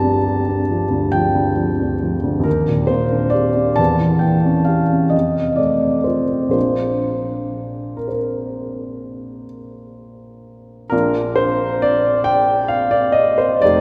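A warm, up-front baby grand piano opens this dreamy, serene romantic nocturne in 9/8 with free rubato, moving from Gm7 through Ebmaj7, Edim7 and F to settle on Bb at 6.6 seconds, spanning F1 to Bb5 and bathed in a wet church reverb, before the section returns at 10.9 seconds in this short excerpt cut from a longer piece.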